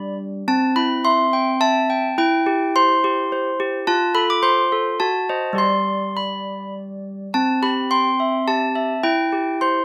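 A close-miked set of handbells sits up front in a small room, with a moderate, short reverb lingering around their clear, ringing tone. This is a tender, innocent classical lullaby in a gentle three-beat metre with a straight feel, cut from a longer piece. The handbells play alone throughout, spanning G3 to D6, and their hard clappers give each strike a bright, full attack. The harmony begins at 0.5 seconds, moving from C through C/E and F to a passing F#dim7 and on to G before settling back on C and C/E. The result is a simple, lilting cradle song whose glowing bell tone carries the whole fragment.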